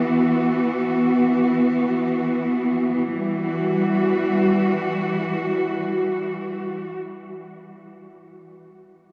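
A rich, bowed cello section holds sustained chords with lush vibrato and a focused, smooth top, sitting up front in a dark, cathedral-like reverb that lingers for 6.8 seconds, shifting from Esus2 to Emadd9 at 3.0 seconds in this unsettling, desolate ambient fragment in free time.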